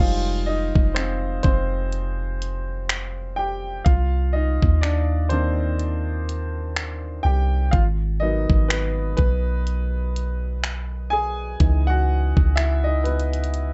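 Longing and late-night, this short excerpt of contemporary R&B moves with a slow, lightly swung sixteenth-note feel over minor ninth chords drifting from Fm9 through Cm9 and Abm9 to Dbm9. A clear, present grand piano carries the passage as a solo with long sustain, while a deep, round 808-style bass with a fast attack and dark decay sits up front beneath it. At 0.8 seconds an electronic, produced drum kit joins with a knocking kick, warm hats and finger snaps that carry a small-room character, all in a dry, close sound with dulled highs.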